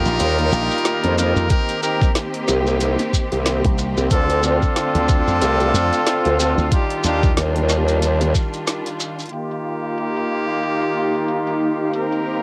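Swung 16ths at 92 BPM drive this playful, swaggering glitch hop cut, where an overdriven, knocking electronic kick and a drum kit with a woody snare and bright hats pair with a saturated, chorused formant-sweep wobble bass and a punchy envelope-filtered slap bass, while tight, brilliant jazz horn stabs with analog delay and lush bowed strings carrying 12-bit sampler grit both pump, a grainy shekere adds texture, and after a filter sweep on the strings begins at 9.3 seconds a cloudy granular pad drifts in at 10.4 seconds, all captured at home on cassette in a booth.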